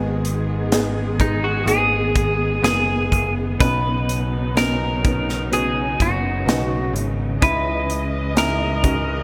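Pop ballad at 63 BPM in B major, heartfelt and emotional, where a soft, mellow felt-muted upright piano with audible action noise and subtle chorus joins a dark, expressive bowed string section and a direct picked electric bass from the start over G#m, Badd9 and C#madd9 chords, while an up-front modern drum kit with a punchy kick and gated reverb enters at 0.2 seconds and a clean, twangy electric guitar carries the melody with lush chorus from 1.2 seconds, all set in a light reverb with bright 1980s-style digital production in this brief cut from a longer piece.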